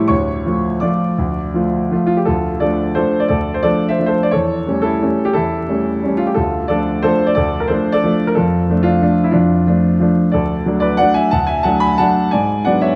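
A lone concert grand piano opens this bittersweet, elegant classical waltz, its clear, open tone placed up front with a deep bass reaching from D2 to D6. Played in a flexible rubato triple metre, the harmony moves from D minor through A7/E and Dm/F to D major before settling on G#m7b5 at 12.3 seconds. A wet concert hall reverb, vinyl crackle and a dark production frame this brief fragment cut from a longer piece.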